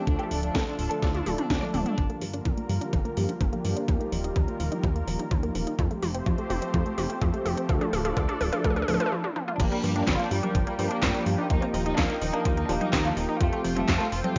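Melodramatic and bittersweet, this italo disco excerpt opens with a rich, bowed chamber violin section carrying the melody over a smooth, warbling vintage pad, dark chorused synth brass stabs and a glossy, detuned synth bass, all driven by a thumpy, up-front electronic kick. A house kit of cracking snare, metallic hi-hats, congas, handclaps, toms and crash cymbal fills out the groove, and from 2.0 seconds a round, bright analog pluck arpeggio with cassette tape colour and delay sits in the background, shaped by a filter sweep. After a short break, the violins return at 9.6 seconds, and the whole recording has a dry, gritty hardware character with light digital ambience.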